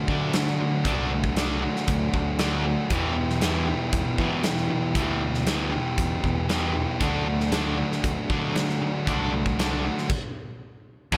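A biting, overdriven guitar sits up front with a warm, picked riff alongside a bright cranked stack guitar riffing lower beneath it, and they are soon joined by a growly fingered bass and a big, dark, smooth acoustic drum kit with a punchy kick, all at 117 BPM in a swaggering, brooding classic rock groove over D and Em7. A stop arrives at 10.1 seconds, and at 11.1 seconds a raw, double-tracked garage guitar bursts in up front just as this cut from a longer piece ends, the whole set in light reverb and small room ambience.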